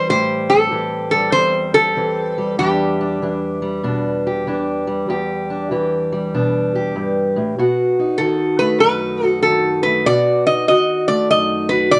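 A lap resonator guitar and a fingerpicked steel-string acoustic guitar begin together in this mournful, smoky acoustic country blues, which swings in an unhurried four. The resonator carries the melody with a slide and fingerpicks, its tone metallic and nasal, and it drops out at 3.8 seconds before returning at 8.2 seconds. Beneath it, the parlour-sized acoustic guitar plays a fingerpicked accompaniment throughout, sounding woody, boxy and dark on old strings. The harmony moves from Am7 to Em7 and settles on B7, lending the passage an unresolved, brooding pull. Both guitars sit up front in a light reverb with a softened top end, and the recording is cut from a longer piece.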